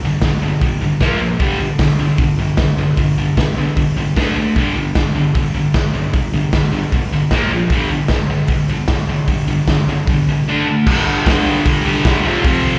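A straight 4/4 pulse at 152 BPM drives this swaggering, raw garage rock passage in G minor, cut from a longer piece and heard as a live gig through a club's PA, where a double-tracked, bright fuzz guitar riff with slapback echo rides up front over chords of G5, Bb5 and D5 while a gritty acoustic drum kit of punchy kick, snare, hi-hat and crash hits alongside from 0.2 s, the music moving into a short closing section from 10.9 s that reaches F5.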